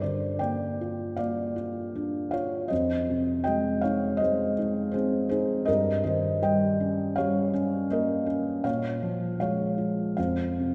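Moving in a free, rubato 4/4 at about 79 BPM, this short classical fragment in F minor, cut from a longer piece, carries a melancholic, dark mood as a felt-muted upright piano plays alone from F2 to G5. The piano sits up front with a soft, intimate tone, thick felt and audible action noise, drifting through Gm7, Fm7, Eb7/G and Bbm7 before settling on F5 at 10.2 seconds. A wet concert hall reverb with a 2.3-second decay wraps the mellow sound in a spacious church-like room.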